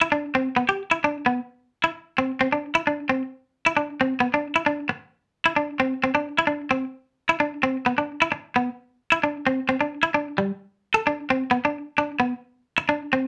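Danceable and carefree, this short highlife excerpt in C major moves at a straight 132 BPM in 4/4, with a clean, compressed semi-hollow electric guitar playing a picked, hollow-bodied solo up front from 0.0 to 13.3 s, shifting into a new section at 9.7 s, all set in a moderate studio ambience that captures a band playing live in one room.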